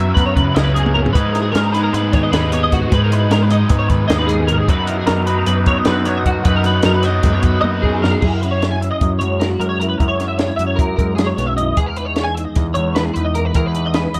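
Wistful yet bright, this math rock and midwest emo excerpt moves at 305 BPM in 9/8, with a dark, clean, fingered electric guitar carrying chorus and plate reverb under bright, compressed twelve-string arpeggios, a double-tracked overdriven garage guitar riff with phaser that drops out at 8.2 seconds, a growling overdriven picked bass, and an up-front cocktail kit with a high-tuned snare and punchy kick that fills at 0.9 and 7.6 seconds, all in a dusky production with light reverb and lossy compression artefacts, moving through chords such as G#m7 and Emaj7.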